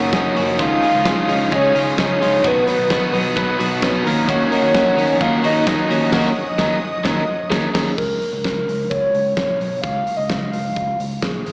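Wistful and bittersweet, this jangly indie pop fragment moves at 130 BPM in a straight 4/4, cut from a longer piece and heard as a live gig through a venue's PA, with moderate club reverb and a small-speaker character. A hollow, woody synth lead with a clarinet-like tone carries the melody throughout, mellow and full-bodied, colored by chorus, phaser, vibrato and digital delay. Beneath it, an up-front overdriven electric guitar with slapback echo plays accompaniment, while a clean twelve-string electric guitar picks arpeggios in the background, treated with slapback echo and digital delay. A very quiet, intimate studio violin section traces a dark second line, and a lush symphonic string section holds sustained chords until 8.0 s, as the chords move through Gb6, Dbadd9, B and Ebm7 before settling on Db6. A foam-muted, round vintage bass anchors the low end, and a big rock drum kit with a fat snare and punchy kick drives the band through a shared accent from 6.1 s into the closing section.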